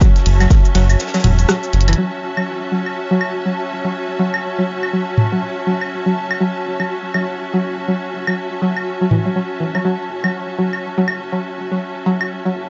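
Dark, softly reverberant production frames this cool, clinical minimal techno excerpt, swung and built around a twangy, string-like resonator pluck riff treated with chorus, delay and sidechain pumping over a round, deep analog bass that enters at 0.3 s, sits up front and pumps too. A punchy, up-front electronic kick sounds only until 0.6 s, while a clicky, tape-toned minimal click kit of hi-hat, ride, rim click and shaker and a very quiet acoustic soul kit of hi-hat and snare both fall away at 2.0 s. Overdriven electronic claves and toms join at 0.4 s and carry on to near the end, and a bright, biting symphonic string section bows a lush, vibrato-laden texture that pumps with the sidechain across the whole excerpt.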